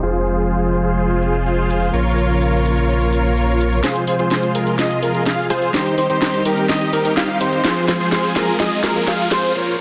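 Dense and heavily limited, with a moderate digital room reverb, this anthemic, euphoric festival progressive house clip opens with a huge, compressed supersaw riff and dark, bowed strings under filter sweeps. Beneath them sit a saturated sine sub bass that stops at 3.8 seconds and an up-front house kit with a cracking, overdriven snare, bright hats, cabasa and rim click. From 3.8 seconds a build-up begins as a nasal, warbling, detuned unison lead plays arpeggios and a drum fill runs, with filter sweeps on both synths, while a very quiet riser enters at 7.1 seconds before a break at 9.6 seconds.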